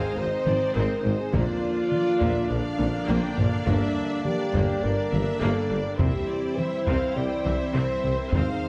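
A straight 4/4 pulse comes from a taiko ensemble struck with hard sticks, entering at 0.5 seconds and breaking into a fill between 2.8 and 3.7 seconds, in this vast, futuristic slice of hybrid orchestral and electronic film score. Mellow French horns sustain chords through Ab, Bb, G minor and C, joined by loose, very quiet trombones and an evolving, detuned sawtooth pad with a chorus effect, a slow attack and a filter swell, while lush bowed violins carry a smooth vibrato melody over a distant second violin line and intense violas. Focused cellos, double basses and a background tuba hold the low end beneath a moderate scoring-stage reverb in a dark, warm production.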